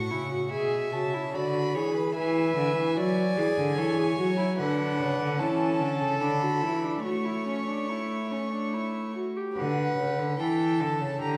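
Serious and solemn, this brief passage cut from a longer piece is a baroque-style fugue for string quartet, moving at 73 BPM in 3/4 with a straight feel and settling into D major from 4.6 seconds. Four period-style, gut-stringed players are bowed throughout: a first violin carries the melody high in its range with light vibrato, while a second violin with a fuller, richer body spins the second line just beneath it. A close, nasal viola with an airy bow supplies the accompaniment until 9.6 seconds, when it drops out as the music moves into a new section. Up front, a cello with light vibrato anchors the bass with a reedy depth. The harmony passes through F#m/A, Bm/D and E before arriving on D, touching E5/D and A, and landing on D again at 9.6 seconds. A wet recital hall reverb, heard from further back in the room, lends the ensemble a spacious, resonant halo.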